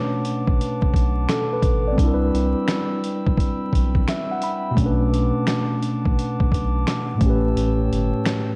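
A swung 86 BPM groove in 4/4 comes from a gritty, compressed sampler-style drum kit of thumpy kick, fat snare, hi-hat and finger snaps, set up front in a large room, while a round, deep sine sub bass holds the low end in this reflective, melancholic lo-fi hip hop excerpt in B minor. A mellow, clean tine electric piano sits up front, heard through its built-in speakers and playing a fill from 3.7 to 4.8 seconds, as a glassy, ethereal glass harmonica sustains smooth chords behind it over a Bm7, Cmaj7, Bm7 and A7 progression. Vinyl crackle hangs over the whole track, lending it a dusty haze.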